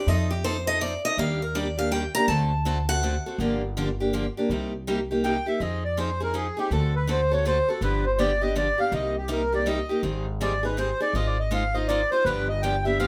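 A reedy accordion carries the melody from 5.2 s, its slow beating and airy tone sitting up front in this bittersweet, swinging passage of acoustic string swing in 3/4, cut from a longer piece. Before it arrives, a picked steel-string acoustic guitar takes a short solo line that ends at 3.4 s, sounding bright and boxy with audible finger squeak. A second picked steel-string guitar, parlour-toned with fresh strings, plays accompaniment throughout. Underneath, a pizzicato upright bass on gut strings gives a woody, dark, thumpy foundation. The harmony moves through chords such as F7, Ebmaj7, Cm7, Abmaj7 and G7. A moderate studio reverb places the close, up-front instruments in a modest room.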